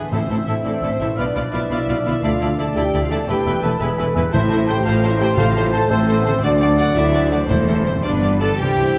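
A warm French horn section holds sustained chords in this triumphant, adventurous film-score excerpt in A minor, moving in a straight 6/8 at 114 BPM over clear cello and double bass sections, a rich viola section and a very quiet trombone section. A clear violin section carries the lush, vibrato-laden melody. Beneath it, a more distant violin section, an airy, hollow flute, a roomy oboe and a dark clarinet weave second lines, while a mellow trumpet section adds soft-attack stabs and a concert harp rings out fingerpicked arpeggios. Dry, articulate timpani strike with hard mallets from 0.1 to 0.6 seconds and return from 4.3 to 8.0 seconds, all set in a reverberant concert hall.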